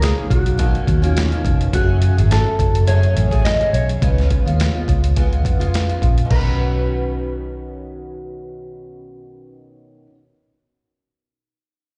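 A relaxed 105 BPM groove in 4/4 with a light 16th-note swing carries this hazy, nostalgic slice of indie bedroom pop in B lydian, drifting from Bmaj9 through F#madd9 and C#7 before settling on Badd9 at 6.3 seconds. Up front, a gritty, pitched-down boom bap sampler kit with a thumpy kick, high-tuned snare, hi-hat and crash punches along until 6.5 seconds, beside a round, foam-muted vintage electric bass. A dark, clean electric guitar carries the melody through lush chorus, plate reverb and slapback and tape echo, while a picked steel-string acoustic adds chorused, vibrato-tinged accompaniment, all heard as a live gig through the venue's PA with a recital-hall reverb and a dulled top end.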